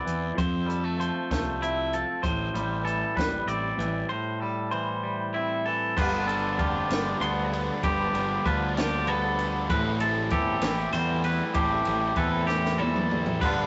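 Math rock and midwest emo in a wistful, intricate 6/8 at 64 BPM in A minor, this excerpt sets two clean, up-front twangy electric guitars, one picking bright, compressed low accompaniment and the other spinning warm arpeggios, over a fuzz-driven picked bass and a compact cocktail kit with dark cymbals, a high-tuned snare and a punchy kick, while a double-tracked overdriven guitar riff joins in the background at 6.0 seconds as the chords move from Fmaj7 and Am7 to G9 and Am9, all in a rough rehearsal-room sound with a small room's reverb and a drum fill at 12.5 seconds.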